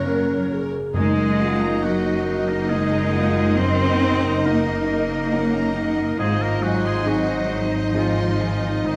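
A rich studio violin section carries the vibrato-laden melody through this hopeful, moving cinematic excerpt, set in a slow, rubato 3/4 at 68 BPM. Around it, a clear, distant oboe, a pure flute section with rolled-off highs and a warm clarinet trace second lines, joined by a lush background section of symphonic violins with a smooth top. A bright, intense viola section and a felt-muted upright piano with a thin, intimate tone fill in the accompaniment. Mellow French horns hold tight sustained chords, and a very quiet concert harp rings out thumb-plucked arpeggios. Below, a focused cello section and a clear double bass section anchor the low end, while timpani struck with hard mallets sound an articulate accent from 0.9 to 2.2 seconds. The harmony moves from Gb through Ebm/Gb to Ab at 6.2 seconds, all bathed in a moderate scoring-stage reverb.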